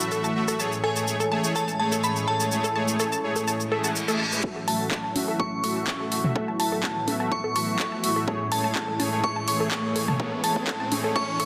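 A dense, heavily limited modern master bathed in lush hall reverb carries this uplifting, euphoric progressive house passage at 125 BPM, cut from a longer piece and moving between F#m7/A and Amaj7. A glassy, crystalline FM bell melody with chorus and dub echo floats over a thick, airy detuned pad with phaser, smooth supersaw stabs under a filter sweep, and bright sawtooth unison pluck arpeggios, all pumping against the sidechain, while overdriven house drums with bright hats, handclaps and shaker drive from the start. A faint, twinkling granular shimmer drops out after the opening, a reverse cymbal and riser enter in the background at 3.7 s, and the build-up gains a punchy overdriven kick at 4.4 s and analog-tinged electronic congas and toms at 5.2 s.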